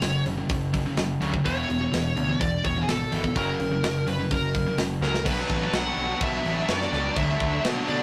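From the first beat, a bright, high-gain lead guitar carries an up-front melody over a heavy distorted riff guitar, a sludgy overdriven guitar sitting in the background, a growling picked electric bass, and a tight metal drum kit of crash, hi-hat, kick and snare. This aggressive, dark heavy metal excerpt drives at 126 BPM in a straight 4/4, its chords moving from F#5 through E and F# before a drum fill at 5.0 seconds leads into a new section on Bm and D. The drums sound mid-forward with a rolled-off top, and the recording has the rough character of a rehearsal room, with tube saturation and moderate reverb.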